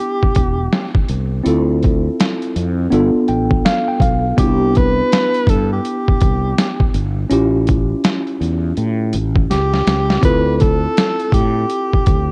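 A breathy alto saxophone and a tine electric piano open this smoky, cool jazz-hop excerpt together at 82 BPM in A minor, with a swung 4/4 groove. The sax carries the melody up front, clear and soft-attacked with vibrato, subtone and scooped notes, while the worn, slightly out-of-tune electric piano comps underneath and slips in a fill from 2.9 to 4.4 seconds. From 0.2 seconds a growly, bright fretless electric bass sits forward in the mix alongside a gritty, pitched-down boom bap sampler-style drum kit whose overdriven hi-hat, thumpy kick and medium-tuned snare anchor the beat, with a drum fill from 9.5 to 10.2 seconds. The harmony moves through Em7, Dm7, G9, Cmaj9 and A7b13 before settling on Dm9. Light reverb and the warbling pitch drift of old cassette tape give the whole passage a hazy, lo-fi sheen.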